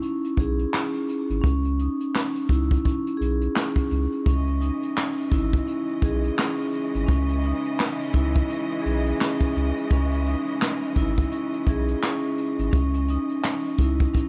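Boom-bap hip-hop in C# minor at 85 BPM, this dark, gritty excerpt rides a swung sixteenth-note feel over a single C#madd9 chord. A jazz brush drum kit sits up front with a natural, acoustic small-room sound, pairing a boomy kick and medium-tuned snare with hi-hat and handclaps. From 0.4 seconds a soft dub sub bass adds a deep, round low end with a fast attack and sustained notes between G#1 and C#2. A metallic, ringing vibraphone played with medium mallets and its motor off carries the accompaniment in a narrow range, its boxy tone filtered and colored by cassette tape. At 4.3 seconds a rich studio string section enters quietly beneath the mix, holding lush, bowed chords with vibrato. Small room reverb and vinyl crackle frame the whole recording with a dusty, lo-fi texture.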